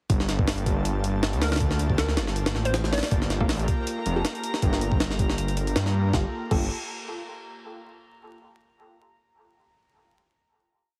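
Frenetic yet atmospheric, this short drum and bass piece in a jungle vein races along with a light shuffle to its sixteenths. A heavily chopped breakbeat from a gritty, pitched-up sampler-style kit sits up front, with a thumpy kick, a medium-tuned snare, hi-hat and crash, while a thick, menacing detuned saw bass pushes long gliding notes through tube saturation. Behind them an airy, breathy pad holds sustained chords with chorus, and from 1.4 seconds a hollow, bouncy square pluck drifts in the background with short phrases trailing dub echo. From 3.4 seconds sparse, nasal dub chord stabs move one shape in parallel through a phaser and echo, joined by a glassy texture holding a single high note with drifting overtones. The whole piece ends on a final chord at 6.1 seconds, heard through a heavily compressed, radio-like sound with vinyl crackle and light reverb.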